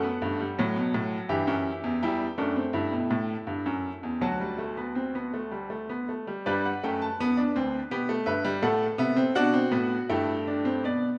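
A brilliant, up-front baby grand piano rings with long sustain inside a moderate concert hall reverb in this short cut from a classical, baroque-style four-part fugue in G major. Playing solo across a range from D2 to A5 at 82 BPM in 3/4, the piece feels driving yet contemplative. It moves through E minor and a rootless C over E toward D, then turns at 6.5 seconds to G, G over B and F-sharp diminished over A before arriving on a G5 at 10.1 seconds.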